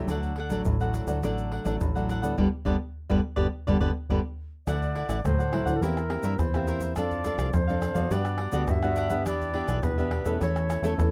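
Samba and choro with a playful, sunny mood, cut from a longer piece, where a crisp, picked cavaquinho and a full-bodied, fingerpicked classical nylon-string guitar carry the chords over a punchy, funky analog bass with a filter pluck and fast attack, with close acoustic percussion from egg shaker, tight surdo, pandeiro and tamborim, a band accent from 2.4 to 4.7 seconds, and an airy, wooden baroque flute entering at 4.7 seconds with a straight, tongued tone, all in a rough home demo mix with light reverb.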